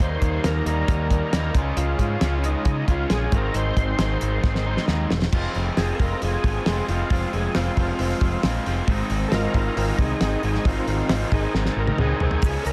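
Gritty and brooding, this classic rock excerpt sets a growling overdriven bass and a raw, double-tracked garage guitar riff with spring reverb over a dry, dark 70s drum kit with a fat snare and fills, while a thick, overdriven tonewheel organ through a slow rotary speaker and chorus vibrato carries the melody and takes a solo from 5.3 seconds, and a grainy tube shaker slips in at 12.4 seconds.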